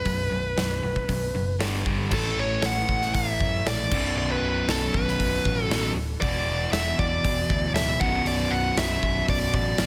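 Menacing and aggressive, this hard rock passage cut from a longer piece sets a dark, smooth lead guitar up front, its overdriven melody carrying a slapback echo over a grinding bed of power chords. Two picked rhythm guitars sit in the background, one bright and cranked, the other sludgy and murky, both playing a low riff while a growly, punchy overdriven electric bass drives beneath them. A big acoustic drum kit enters at 0.1 seconds with a hard-hitting kick, medium-tuned snare, hi-hat and sparkling crash cymbals, all in a lightly reverberant room.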